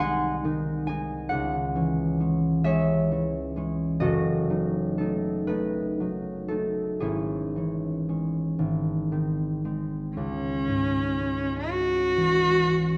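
A single bowed cello, rich and up front, carries the melody in this yearning, melancholic fragment of a longer romantic piece, entering at 10.2 seconds with expressive vibrato, portamento and a soft attack. Before it arrives, a concert harp plays alone from the start, its thumb-plucked acoustic tone ringing and warm as it spells out the accompaniment. The duo moves in a flexible 6/8 with rubato, tuned to A4 = 435 Hz. The harmony passes through seventh and diminished chords before returning to the minor chord heard near the opening just as the cello enters, marking the move into a new section. A dark production and scoring stage reverb wrap the two close-placed instruments in a wet, spacious tail.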